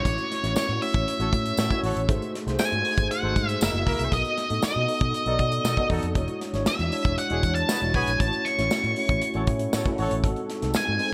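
Driven by a straight 4/4 groove at 118 BPM from a tight-kicked, gated-reverb drum kit with a dark, rolled-off top, a round, foam-muted fingered bass and a jingly tambourine, this breezy, upbeat slice of polished 1980s jazz-funk pop moves through chords such as A6, G#7b9, F#13 and E13. Up front, an octave-fuzz lead guitar with distortion and delay carries the melody, while a clean tine electric piano with ensemble chorus supplies the accompaniment and a mellow, punchy horn section adds a second line in the background. The production is bright and digital in a 1980s style, with light reverb and small room ambience.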